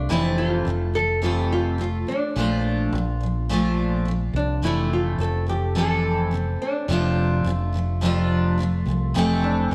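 Soaked in a moderate echo-chamber reverb alongside a small room, this sunny, heartfelt pop excerpt in F major moves at a straight 106 BPM in 4/4, cycling through Fmaj7, Bbmaj7 and Dm7/F. A full-bodied, double-tracked steel-string acoustic guitar sits up front with picked chords, while a small, boxy nylon-string guitar carries the fingerpicked melody on top. A dark, round fingered electric bass anchors the low end throughout the 9.7 seconds.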